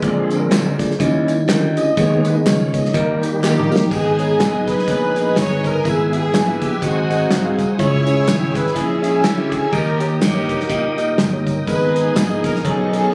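Captured on a phone in a club, with light reverb and small-room ambience, this fragment of an uptempo gospel tune at 124 BPM swings in G# harmonic minor with a fervent, soulful mood. A reedy, lightly overdriven tonewheel organ with key click, chorus vibrato and a slow rotary speaker takes a solo over clean tine electric piano, a growly slap bass, a fat-snared soul drum kit, tambourine and group handclaps, and a very quiet French horn section holding sustained chords. A drum fill at 3.4 seconds brings in a breathy, distant alto saxophone with slapback echo and scooped notes alongside a rich, floating bowed string section, as the chords move from G#m through E/G#, G#7 and C#m to D#.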